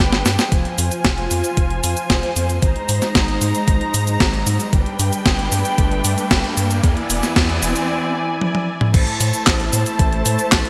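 Veiled, con sordino studio strings sit up front with dark sustained chords and vibrato, moving through G, Fm, Abadd9, G and E7 before landing on Am at 8.9 seconds in this bittersweet, danceable italo disco fragment at 114 BPM. Underneath, a round analog bass with a fast attack and a thumpy, overdriven electronic kick drive a straight 4/4 pulse, while a clean, overdriven 12-bit drum machine adds snare, hi-hat, handclaps, cabasa, toms and crash, with fills at the start and at 8.4 seconds. A background riser builds from 2.9 seconds into a brief break, all set in a lush hall reverb with bright 1980s-style digital production.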